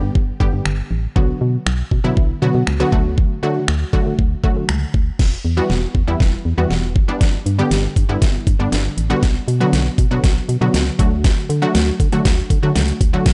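Summery and euphoric, this dance-pop excerpt moves at 119 BPM in a straight 4/4 feel in D major, cut from a longer piece. A bright, lush unison pluck sits up front as accompaniment, its detuned sawtooth layers, sine and noise layer giving a punchy, fast-decaying attack, while an organ-like FM bass underneath sounds hollow, dark and percussive; both parts carry sidechain pumping. An electronic, produced R&B drum kit enters at 0.2 seconds with a knocking kick, deep snare, metallic hi-hats, finger snaps and crash cymbal, placed prominently in the mix. The chords move through G, Bm and D, then from 5.2 seconds a second section opens on Emadd9 and cycles back through G, Bm and D as a build-up and drum fill run to the end at 13.3 seconds. The sound is dry and gritty, with little reverb and a hardware character that rolls off the top end.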